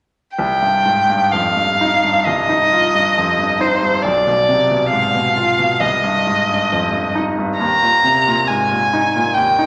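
Romantic classical music for violin and grand piano, melancholic and yearning at a rubato 68 BPM in C minor, sets a rich, up-front violin melody with expressive vibrato and portamento over a bright, brilliant piano accompaniment of short-sustained chords moving through C minor, B diminished seventh and E-flat from 0.4 to 9.7 s, all wrapped in a wet recital-hall reverb in this fragment cut from a longer piece.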